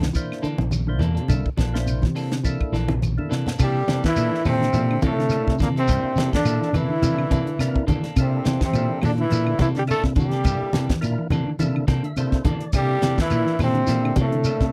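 A tight funk drum kit drives this hypnotic afrobeat groove at 105 BPM in 4/4, its high-tuned snare and tight kick sitting up front with a light sixteenth-note swing, while the round, dark fingered electric bass anchors C mixolydian over a C13 harmony. Congas with a thin, bright skin and woody claves fill out the percussion from the background, joined by a grainy shekere. Two clean electric guitars weave through the mix: a very quiet, mellow one playing low arpeggios and a hollow-bodied semi-hollow guitar adding picked stabs, joined by a fat, lightly overdriven tonewheel organ with percussive attack and a slow rotary speaker. After a drum fill at 2.9 seconds, a bright, smooth-topped trombone takes the melody at 3.6 seconds, shadowed by a raspy, growling tenor saxophone on a lower second line. The organ adds a fill at 11.6 seconds in this dry, close, 1970s-style studio recording with light reverb, which is cut from a longer piece.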